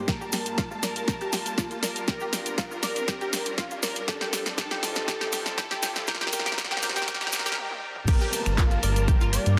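A dreamy, bittersweet progressive house passage in G minor at 120 BPM opens with a catchy, detuned unison lead and clear, distant symphonic strings, soon joined by a bright analog pluck playing filtered arpeggios through chorus and dub echo, while a punchy kick, layered house kit with bright hats and claps, grainy cabasa and a very quiet riser drive a filter-swept build-up over Gm7, G9sus4 and Cm9/G. After a drum fill and a short break at 7.6 seconds, the drop lands at 8.1 seconds as a deep, round analog bass enters up front, pumping with the strings and pluck against the kick. The mix sits in a lush hall reverb under a dense, heavily limited modern master.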